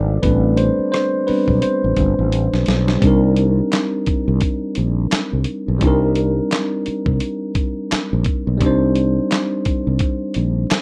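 Swung sixteenths at a relaxed 86 BPM in 4/4 carry this introspective, smooth neo-soul R&B cut from a longer piece, where a clean tine electric piano through a combo amp leads a solo passage over Am11 while a shimmering, very quiet chorused pulse-width pad holds sustained chords until 3.0 seconds, a growly, up-front fretless bass anchors the low end, and a gritty, compressed sampler-style kit of thumpy kick, snare, rim click, hi-hat and handclaps plays a fill from 2.3 seconds into a shift to Cm9, all with light reverb in a rough home-demo mix.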